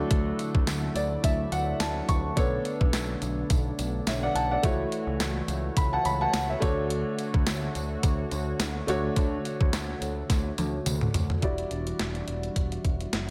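This 1980s-style pop piece moves at 106 BPM in 4/4, with a 55% swing on the sixteenths and tuning at A4 = 437 Hz, and its mood is dramatic and nostalgic. A smooth, vintage grand piano sits forward in the mix as the main accompaniment and plays a fill near the start. Behind it, a brassy, bold, detuned sawtooth analog pad holds soft-attack chords, colored by chorus, vibrato and a filter swell. An overdriven picked electric bass, direct and amped, anchors the low end, while a clean 12-bit drum machine with a thumpy kick, medium-tuned snare, hi-hat, toms and tambourine sounds tape-warm and up front, re-recorded in a large room, and it plays a fill just before the harmony shifts to Em9 at 11.4 seconds. A separate jingly acoustic tambourine sits close but in the background, and the chords move from Dmaj7 through Bm9 and F#m7/C# back to Dmaj7 under light reverb and digital ambience, in a clip cut from a longer piece.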